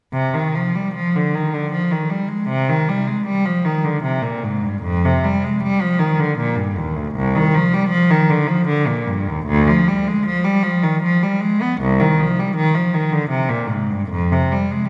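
In an unhurried 3/4 at 78 BPM, the pulse bends freely with rubato, giving this classical, baroque-style suite movement a searching, grave character. A single bowed cello plays alone from 0.1 to 14.9 seconds in C minor, tuned to A4 = 443 Hz. Its smooth, even line ranges from C2 up to B3, colored by vibrato and sitting up front in the mix. The tone is clear and the mood introspective. A reverberant concert hall, with a decay of about 2.0 seconds, surrounds the instrument with a long, spacious tail, and the passage is cut from a longer piece.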